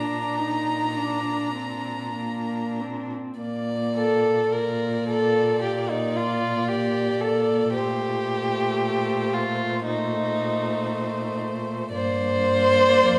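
Classical slow romantic string quartet movement, warm and lyrical with a flexible rubato feel, in which an airy, intimate first violin sings the melody with light vibrato and a soft attack over a dark, woody second violin carrying an up-front counterline, a distant viola playing sul tasto accompaniment, and a close, smooth-topped cello bass, all four bowed by single players in a reverberant recital hall as the harmony shades toward G minor near the end.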